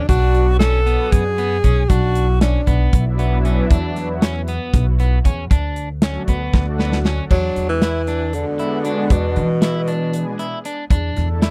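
Progressive instrumental band music in a driving, intricate 7/8 at 233 BPM counted in eighths, set in E mixolydian and cut from a longer piece, with a dry, close 1970s-style studio sound. A breathy, subtoned tenor saxophone carries the melody up front in two phrases, falling silent at 3.0 seconds and returning at 7.3 seconds, while a woody, pizzicato upright bass and a punchy, airy drum kit drive underneath and a drum fill leads into the second section. A silky, bright analog string pad with ensemble chorus sustains behind picked arpeggios from a slightly broken-up electric guitar with warbly pitch drift, as the harmony moves from Bm through D to E7 and closes on Dsus2/E.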